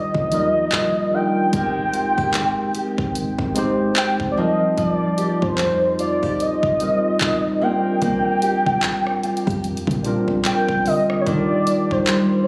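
A velvety, detuned synth lead carries the melody up front through chorus and tape echo in this dreamy, tender contemporary R&B excerpt, over a clean tine electric piano, a fingerpicked nylon-string guitar playing arpeggios, a deep, boomy 808-style bass, a faint shimmering cimbalom, and a swung electronic drum kit with a knocking kick, hi-hat, handclaps and rim clicks, all heard as if captured on a phone in a club-like room with light reverb and compression.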